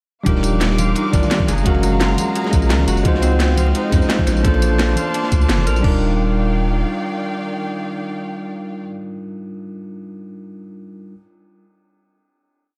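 Liquid drum and bass at 172 BPM, uplifting and lush, built on rich major-ninth chords. A bell-like tine electric piano with vintage sampler grit and tape echo holds syncopated chords up front over a vibrato-rich bowed string pad and a ringing, fingerpicked Celtic harp arpeggio that drifts against the bar, while a deep, saturated sub bass carries a dub-style line. The drop runs from 0.3 to 5.8 seconds, driven by a thumpy, compressed electronic kick, a layered kit with cracking snare, bright hats and tambourine, a dark looped breakbeat in the background and very quiet hand drums, before the music settles on a final chord and the electric piano lingers to 11.2 seconds.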